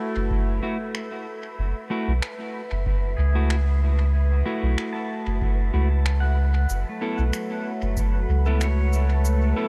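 A round, deep sub bass sits up front in this meditative, spacious ambient dub fragment, holding the low end on an F#m7 chord in F# minor at 94 BPM with a light 16th-note swing. Around it, a pedal steel guitar played with fingerpicks spins arpeggios with slide and volume swells, its compressed tone drifting through analog chorus and diffuse ambient delay. A dark, clean electric guitar adds fingered stabs that trail off into dub echo, while a warbling, lo-fi pad fades in from the background with detuned, nostalgic sustained chords. Low in the mix, a tape-warm electronic kick thumps from 0.3 to 8.1 seconds, and overdriven electronic finger snaps and cabasa, re-recorded in a small room, scatter dub echoes from 0.9 seconds. An airy, breathy, wind-like noise layer hangs on a single tone behind it all, and light reverb with digital ambience gives the short cut from a longer piece a hazy, open feel.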